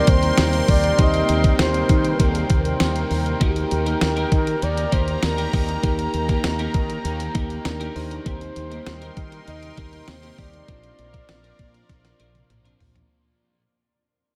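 A clean 12-bit drum machine sets a straight 99 BPM pulse in 4/4, its thumpy kick and fat snare up front with hi-hat, tambourine and toms, while a direct fretless bass with lush chorus carries the low end of this glossy, uplifting 1980s-style pop excerpt in Eb major. A breathy, whispered flugelhorn sings an intimate lead with light vibrato and scooped notes through diffuse ambient delay, over round, mellow electric-piano-like synth keys, a detuned, sweeping sawtooth pad with filter swells and a slow attack, and a very quiet overdriven stack guitar. A twangy twelve-string electric guitar riff joins in the background at 3.4 seconds, and a drum fill arrives at 11.9 seconds as the whole dreamy, reverb-soaked mix fades out.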